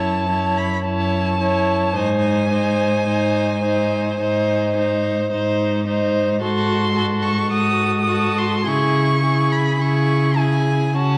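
A slow, elegiac string quartet movement in C# minor opens with all four players bowing together, the music moving freely in rubato at around 51-56 BPM in 4/4. Up front, a single cello carries the bass line with a focused tone and a smooth top, while a close viola fills the accompaniment with a rich, even sound. A distant second violin sings its middle line with clear, focused vibrato, and above it the first violin carries the melancholic melody high in its range, rich and smooth. The harmony drifts from F#m7 to G#, darkens through G#7b9 at 6.4 seconds, and settles on C#m at 8.7 seconds. The quartet sits in a wet scoring-stage reverb, and worn, cassette-like tape gives the recording a warbly pitch drift and an aged, wistful cast.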